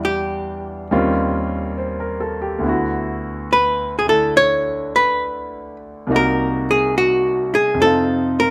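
Close, detailed microphones and a light reverb frame this brief, intimate jazz passage, cut from a longer piece, at a slow 70 BPM in 4/4 with a swung eighth-note feel. An up-front archtop guitar, miked and amplified, carries the romantic melody with a dark, clean, hollow-bodied electric tone, while a polished concert grand piano accompanies with clarity and deep bass. Both play throughout the 8.5 seconds as the harmony moves from Em7 through Eb13 and D69 to Cm7b5, settling on F5 at 7.8 seconds.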